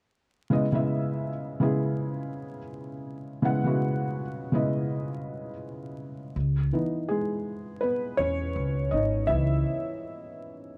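A dark, hazy production sits under a bed of vinyl crackle, with a moderate studio reverb lending a soft glow to this melancholic lo-fi hip hop fragment, cut from a longer piece. A felt-muted upright piano carries the accompaniment up front from 0.5 s, opening on a C#m9 chord. Its tone is soft, mellow and intimate, rounded by a low-pass filter, with short sustain and the natural action noise of the instrument audible close to the ear. The groove has a lazy 16th-note swing in 4/4. At 6.4 s the piano moves into a solo passage, and a woody, pizzicato upright bass with steel strings joins it up front. The bass adds a dark acoustic presence in its low register before dropping out at 9.6 s. The piano carries on to the end, keeping the warm, melancholic mood intact.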